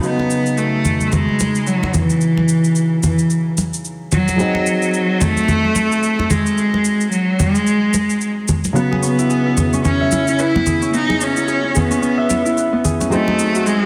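Mystical and warm, this organic downtempo excerpt in swung 4/4 sets a rich, vibrato-laden bowed cello melody with delay over a soft felt-muted upright piano with audible action noise, ringing thumb-plucked Celtic harp arpeggios with delay that drop out at 2.7 seconds and return at 8.8 seconds, hard-handed congas and an overdriven electronic shaker, inside a wet echo-chamber reverb and a dense, heavily limited modern master.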